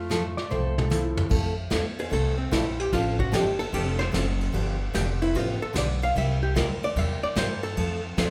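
This short cut from a longer piece sounds like a band playing live together in a large studio, with a moderate, roomy reverb around them. It is down-home, playful western swing in F major at 149 BPM, with a swung feel on the eighth notes. A hollow-body archtop guitar carries the melody, clean and compressed, and from 1.3 seconds it takes a jazz guitar solo over a Dm7, G7 and C9 progression that returns to Fmaj7. Early on, a very quiet clarinet adds a brief subtone phrase with vibrato and scooped notes. A dark, slide-voiced lap steel and a clear, woody upright piano also slip in short second-line and accompaniment touches. Underneath, a thumpy gut-string upright bass and a bright dreadnought acoustic guitar with audible finger squeak keep things moving, while an up-front brush kit with dark cymbals and a punchy kick plays a fill from 0.5 seconds into the solo.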